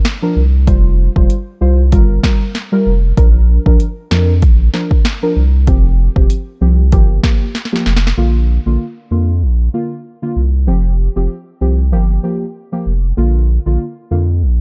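Dancehall with a summery, sunny mood, this short cut from a longer piece rides a swung groove in 4/4 and moves through a simple loop of Bb, Fsus2 and Gm7. An electronic afro-pop drum kit sits up front with a deep kick, sharp snare and metallic hats, its overdrive giving the beat a gritty bite, and it closes with a drum fill before dropping out at 8.2 seconds. A saturated sub bass, thick and sine-like with a fast attack and sustained notes, carries the low end and stays up front through to the end. Behind them, a soft, full-bodied chord stab built from detuned, wave-folded tones plays decaying chords coloured by chorus and pumped by sidechain, lending a mellow, dusky glow. Once the drums stop, the bass and chord stab carry the second section alone, leaving a dark, digitally ambient production.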